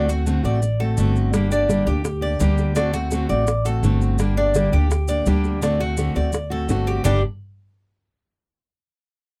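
Closely miked with light reverb, this sultry fragment of Cuban son and guajira at 168 BPM in G harmonic minor sets a fingerpicked steel-string acoustic guitar and a metallic, double-strung tres up front over a woody, thumpy pizzicato upright bass, with grainy, dry maracas alongside and tight, high-tuned bongos joining in the background at 1.3 s, as the harmony moves between D7 and Gm before landing on G5 at 7.1 s.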